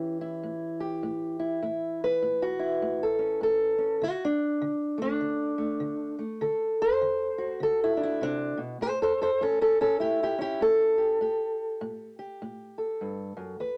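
A moderate studio reverb gives this recording a modest sense of room around a single guitar placed up front in the mix. It is a rollicking yet laid-back piece of acoustic country blues in A mixolydian, cut from a longer performance and moving at 100 BPM in 4/4 with a 61% swing on the eighth notes. The only instrument is an old ladder-braced acoustic guitar, fingerpicked throughout its 13.8 seconds, with a dark, woody, boxy tone from its old strings. The playing spans E2 to C5 and moves from A7 to D7 at 4.0 seconds before returning to A7 at 8.8 seconds. Tuned to A4 = 441 Hz, the guitar carries the whole piece on its own.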